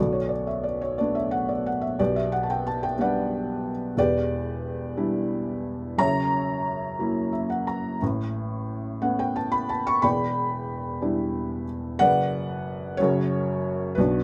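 A felt-muted upright piano carries this reflective, melancholic classical miniature alone, its soft, boxy tone sitting up front with the quiet clatter of the action clearly audible. Cut from a longer piece, the passage unfolds in 6/8 with rubato phrasing, spanning the keyboard from E1 up to C#6. The harmony drifts through Bm7, G/B, Em7 and F#7, moves to Aadd9, then returns through Em7 and Bm/F# toward a closing F#. A short piano fill sounds between 7.0 and 8.0 seconds. Close, detailed miking and a light touch of reverb give the whole a soft, intimate character.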